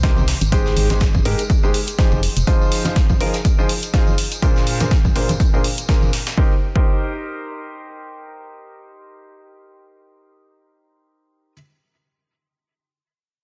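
An intimate baby grand piano with audible action noise carries a bittersweet riff through this energetic piano house excerpt, pumping with sidechain and trailed by dub echo over Cm7, Abmaj7, Fm7 and Bb9 chords. A punchy, up-front analog kick drives the swung groove alongside an electronic hi-hat, bright tambourine and soft-handed congas, and a gritty, tape-toned breakbeat kit whose high-passed hats and snare sit in the background. A hollow, dark, organ-like FM bass sounds beneath until 2.4 seconds, and a barely audible impact marks the opening. The percussion drops out at 6.4 seconds and the kick at 6.9, leaving the piano to play on by itself.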